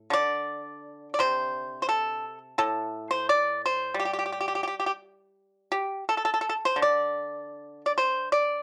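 Elegant and contemplative, this short excerpt of Chinese traditional music features a solo pipa played with fingerpicks, moving freely in rubato across a range from low to high. The instrument sounds bright, dry and percussive, placed up front in a small room with a moderate touch of reverb. The 8.6-second passage was captured as a home recording on cassette.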